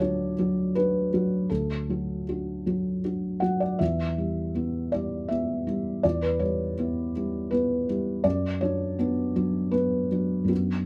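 A felt-muted upright piano carries this short passage alone, its thick felt giving the tone a soft, dark, intimate quality, with the mechanical action noise audible and the instrument sitting up front. The style is neoclassical minimalist piano in E dorian, reflective and wistful in mood, moving at 80 BPM in 3/4 with a rubato feel that lets the time breathe. The piano ranges from D2 up to F#5, and the harmony moves from D to Em at 3.8 seconds, then settles on Bm over F# at 8.2 seconds. A moderate studio reverb surrounds the playing with a natural sense of room while keeping the close, mellow character intact. The 10.9-second clip is cut from a longer piece.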